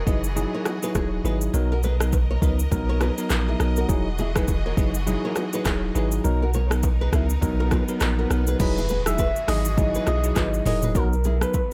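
A digital ambience frames this short, sunny and romantic afrobeats excerpt at 102 BPM in 4/4, with a gentle sixteenth-note swing. An up-front electronic afro-pop kit drives it with a deep kick, metallic hats, handclaps, rim clicks, shaker, toms and crash, while a punchy sine sub bass with a pitch-drop attack sits beneath. A fingerpicked acoustic flamenco guitar riff, complete with finger squeaks and a tape echo, floats over a bright, bell-like tine electric piano and a lush, bowed string section holding sustained chords that alternate between Emaj9 and Bmaj7. Very quiet congas and bongos, played with soft hands, add a compressed, saturated texture. A faint electronic swell and impact arrives from 7.4 seconds, and at 8.6 seconds a round, gentle FM synth lead with chorus and vibrato carries the melody into the closing section.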